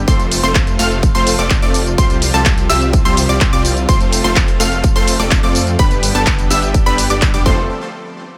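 A detuned saw bass, thick and saturated, sits beneath a lush, warbling unison pad in the background from the very start of this cut from a festival progressive house drop, and both breathe with sidechain pumping and chorus. Within a moment a punchy electronic kick arrives up front, joined by a layered big-room kit of handclaps, hi-hat and tambourine that drops out at 7.4 seconds. Above it, a bright supersaw stab carries the riff with an airy noise layer, while a high, bright unison pluck spins arpeggios; both are sent through digital delay and pump against the kick. The harmony moves from F to Csus4, back to F and on to G before settling on F again, giving the straight passage an uplifting, triumphant lift. The mix is dry and loud, with little reverb, so the kick and stabs hit hard and close.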